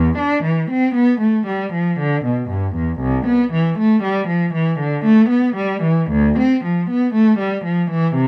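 Classical baroque-style suite movement for unaccompanied cello, solemn and grave at a slow 59 BPM in a rubato 3/4, with a single bowed cello playing up front from 0.0 to 8.3 s, ranging from C2 to D4, its warm, expressive tone shaded by vibrato and portamento, moving from C major to A minor at 3.0 s in a dry, closely miked recording that catches every detail of this short excerpt from a longer piece.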